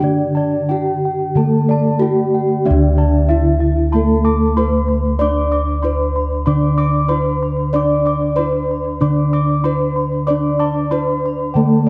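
A straight 4/4 pulse at 94 BPM carries this ceremonial, shimmering Javanese gamelan passage in D slendro, cut from a longer piece and settling into a new section at 2.7 seconds. A mellow bronze metallophone struck with padded disc mallets sings the melody through tape echo, while a second metallophone with a boxy small-room tone plays accompaniment below it, and a dark, smooth metallophone played with a wooden mallet joins soft, close-miked bossed gongs (also touched with tape echo) in high arpeggios. Bright, round bossed gongs anchor the bass most prominently, the paired tuning of the metallophones producing shimmering beats inside a moderate concert-hall reverb and a dark overall production.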